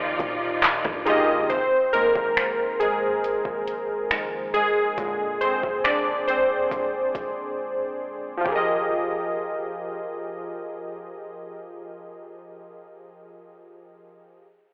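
Round, detuned sawtooth keys with chorus open this late-night, longing contemporary R&B excerpt at 69 BPM in F dorian, backed briefly by lush, bowed strings and a deep, boomy 808-style bass on an Ebmaj9 chord. A soft, overdriven electronic kit of finger snaps, handclaps, hi-hat, kick and rim click enters at 0.2 s, and from 1.5 s it sits underneath as the up-front keys take a solo over Fm7 and Bb9, before a silent gap at 7.6 s gives way to Fm11. Moderate plate reverb and a large studio space give the mix depth, yet it comes across like a telephone line played on a big sound system in a bare room.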